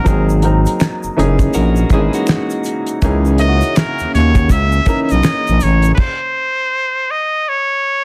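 R&B and neo-soul at 81 BPM with a swung sixteenth feel in C# dorian, this introspective, soulful excerpt sets a nasal, breathy muted trumpet melody over clear baby grand piano, a growling FM bass, a damped 70s drum kit with fat snare and dark cymbals, and close, dry tube shaker and finger snaps, while a slightly broken-up electric guitar adds a second line from 1.5 to 3.0 seconds, a shimmering string machine holds very quiet chords from 3.0 seconds, and the band stops at 6.0 seconds to leave the trumpet alone under light reverb in a dense, heavily limited modern master.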